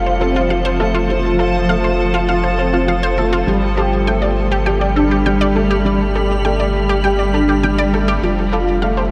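Soaked in a huge ambient reverb, this dreamy excerpt of piano and strings electronica moves at 101 BPM in a straight 4/4 with a moving, hypnotic mood. A dark, boxy baby grand piano with audible action noise plays a riff through ensemble chorus and delay, while a cloudy granular pad holds evolving sustained chords and a round sine sub bass sits deep and up front. From 0.1 s a detuned sawtooth pluck adds bright arpeggios with chorus and delay over a harmony that shifts from F to Gsus2 at 3.5 s and back to F at 8.2 s.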